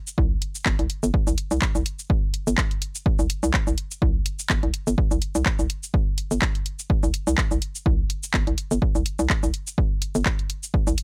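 A house drum kit of handclaps, hi-hat and shaker opens this quirky, clinical minimal techno excerpt at 125 BPM with a 56% swing on the sixteenths and tuning at A4 = 437 Hz. At 0.2 s it is joined by a punchy, layered electronic kick and a hollow, bouncy FM bass knocking between G1 and C2 with a fast attack, quick decay and sidechain pumping. All three sit up front in a dry mix that runs to 11.0 s, with the kick and kit tape-warm.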